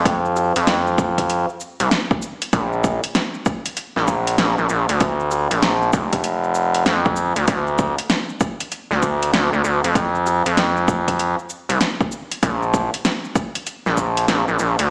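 Swaggering and gritty, this glitch hop piece swings its 16ths under an up-front, aggressive sawtooth synth bass with oscillator sync, a resonant filter pluck and saturated sustain, joined by a punchy electronic kick and a pop drum kit of fat snare, metallic hi-hats, rim click and shaker, both drum parts overdriven and re-recorded in a small room, with a light stone-room reverb that sounds like a big sound system in a bare room heard through a small speaker.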